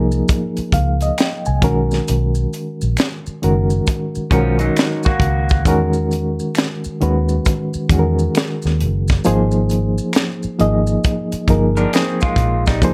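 A reedy, slightly out-of-tune electric piano with fast tremolo sits up front in this relaxed, warm neo-soul R&B excerpt at 67 BPM with a 16th-note swing, backed by a dark, foam-muted fingered bass, a tight funk kit with a high-tuned snare, soft maracas and finger snaps, and a slightly broken-up, lo-fi electric guitar that surfaces briefly at 4.3 and 11.8 seconds over Dbmaj9, Cbmaj9, Emaj9 and Abadd9 chords in light reverb.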